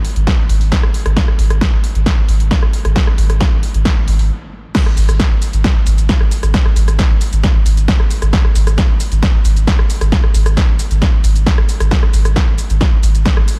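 The sound is close and dry, with little reverb, and the drums carry a tape-like warmth from being re-recorded in a small room. This is a driving peak-time techno excerpt at 134 BPM in straight 4/4, tuned to A4 = 439 Hz, with an intense, relentless mood. A heavy, layered electronic kick sits loudest in the mix, entering at 0.3 seconds. Around it a produced techno kit of punchy snare, warm hi-hats, rim click, shaker and crash cymbal pumps against the sidechain on its hats, cymbals and percussion. Beneath them, a deep, thick sub bass with a triangle tone, tube saturation, a fast attack and sustained notes sits on G#1 through a low-pass filter, also pumping with the sidechain. After a brief stop from 4.3 seconds, the drop lands at 4.7 seconds and drives on until the cut.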